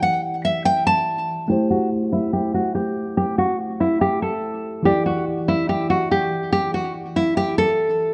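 Eerie and dark, this half-time hip hop excerpt at 143 BPM in A dorian sets an up-front, full-bodied fingerpicked nylon-string guitar melody, with audible finger squeak and digital delay, over a worn, slightly out-of-tune tine electric piano that sounds as if played through built-in speakers, while a filter sweep runs from 1.5 seconds to 8.1 seconds inside a recital-hall reverb with a dulled top end as the chords move from Em7 to Am7 and back.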